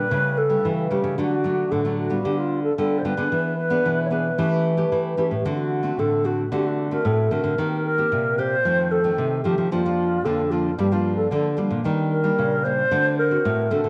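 Samba and choro at 112 BPM in a straight 4/4, this short excerpt from a longer piece feels yearning yet lively, with a pure, hollow alto flute carrying the melody with vibrato and tongued notes that sound both up front and distant. Two fingerpicked classical nylon-string guitars support it throughout the 13.9 seconds: one dark and up front, playing accompaniment with audible finger squeak, the other warm, holding down the bass line. Moderate echo-chamber reverb and small-room ambience surround the players, while the chords wander from A7/C# through Eb6 and Gm7 before settling on D7.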